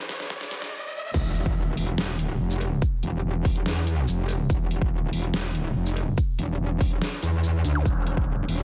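A dense, heavily limited and nearly dry mix opens this chaotic, menacing cut of heavy wobble dubstep in a half-time feel, where a very quiet, biting bowed cello and barely audible lush supersaw chords sound only through the first 0.7 seconds beneath a drum fill, riser and filter sweep. At 1.1 seconds the drop lands with an electronic impact, and a metallic, aggressive wobble bass, distorted and chorused, takes the low end up front beside a punchy, overdriven electronic kick. An overdriven dubstep drum kit with a deep snare, crash, hi-hat and shaker drives the rest, while a zap cuts in near the close.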